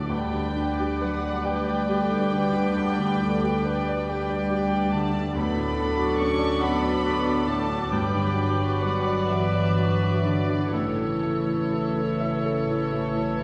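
Lush and lyrical, this orchestral classical passage unfolds in a slow, rubato 12/8, cut from a longer piece and lasting about 13.4 seconds. A natural-toned baby grand piano carries the melody alongside a close violin section playing sul tasto with a soft attack and a floating tone, while a second, richer violin section sits more distant with its own line. A silver concert flute with vibrato and lifted highs floats high above, joined by a smooth-topped cor anglais in the background on another second line. A mellow bassoon and a very quiet, intimate viola section with light vibrato fill out the accompaniment, and a dark, tight French horn section holds sustained chords behind them. Cellos and a dark double bass section anchor the bass as the harmony moves from G/D to D, then Gmaj7 at 7.9 seconds and A, all bathed in a wet concert hall reverb that places the listener further back in the room.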